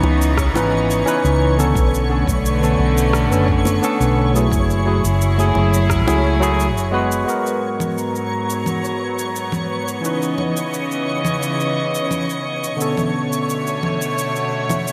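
Sunset chillout at 87 BPM in G# phrygian, wistful and relaxed: a barky, lightly overdriven tine electric piano and a reedy chamber string section with gut-string tone and light vibrato sit up front over C#m9, Bm9, F#m9 and G#m9 chords, while a punchy hollow-body fingered electric bass and a deep, layered electronic kick anchor the opening before dropping out at 7.2 s and 6.0 s; very quiet low-tuned bongos, electronic cabasa, rim click and congas with gated reverb, and a sparkling FM granular texture with octave-up shimmer fill out the mix, a filter sweep moves over the electric piano until 7.3 s and then over the strings, and the mix sits in a lush hall reverb with bright 1980s-style digital production.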